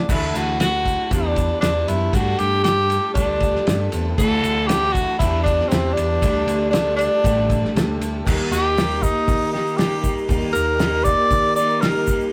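This nostalgic, hopeful excerpt of folk rock and heartland rock at 118 BPM opens with a clear, up-front tenor saxophone melody with light vibrato over a woody acoustic guitar and a twangy, slightly broken-up electric guitar riff. A round, punchy electric bass, a dry, cloth-damped drum kit with dark cymbals and a fat snare, and a grainy egg shaker join at 0.1 s. A very quiet tonewheel organ with key click and slow rotary speaker sounds briefly at the very start and returns with sustained chords from 3.9 s. At 8.3 s the harmony moves from Dadd9, Em7 and suspended chords to Eb for a new section, all in a rough, saturated rehearsal-room sound with moderate studio ambience.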